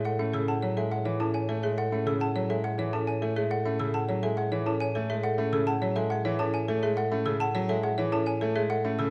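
A clear, up-front baby grand piano carries the accompaniment in this bright, hypnotic fragment of minimalist classical pattern music at 104 BPM in 3/4 and A major, resting on a single Amaj7 chord as a medium-mallet marimba plays the melody, a rustic, woody folk marimba with hardwood bars and a mellow xylophone struck with soft rubber mallets play arpeggios, and a dark bass clarinet anchors the bass on a low A, all set in a wet recital hall reverb.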